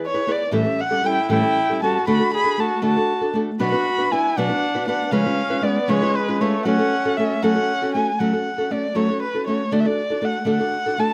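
A steady 6/8 pulse at 78 dotted-quarter beats per minute carries this short cut from a longer mariachi-style Mexican folk piece in F# minor, with a mood that is both romantic and festive. A small, fingerpicked nylon-string guitar sits up front as accompaniment across the whole passage, its finger squeaks audible through close, detailed microphones. Almost at once a single bowed erhu takes the melody in its upper register, dark and woody, with a smooth top, expressive vibrato and sliding portamento. At 1.1 seconds a warm trumpet adds a lower second line in a classical solo style with light vibrato, dropping out at 8.0 seconds just before the opening section returns. The harmony moves from E and A7 through D, Bm and C#7 to F#m before returning to D, all set in a moderate recital-hall reverb.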